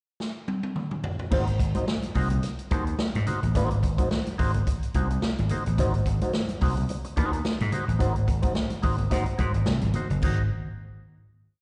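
A drum-kit fill opens this short, strutting funk piece in Ab mixolydian at 108 BPM. At 1.3 s a punchy, amped vintage slap bass lays down a syncopated riff anchored on the downbeat with chromatic approach notes, while a dark, clean electric guitar scratches out sixteenth-note rhythm through wah and slapback echo, and bright, compressed congas with their own slapback sit in the background over the drums' tight, swung sixteenth-note groove on a single Ab9 chord. The playful band sounds like a live gig heard through the venue's PA, with recital-hall reverb and a muffled top end, before closing on a final chord at 10.2 s.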